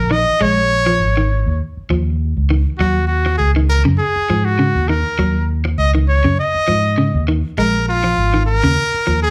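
Played live in one large studio room with moderate reverb, this short, funky, intense afrobeat cut moves at 101 BPM in Eb minor with a light sixteenth-note swing. A clear, close-miked trumpet carries the melody up front with pop-style vibrato, while a round, punchy fingered electric bass sits equally forward and an electric guitar at the edge of break-up picks arpeggios from 0.1 seconds. The harmony shifts from Bb7sus4 to Ebm7 at 2.8 seconds and back to Bb7sus4 at 7.6 seconds.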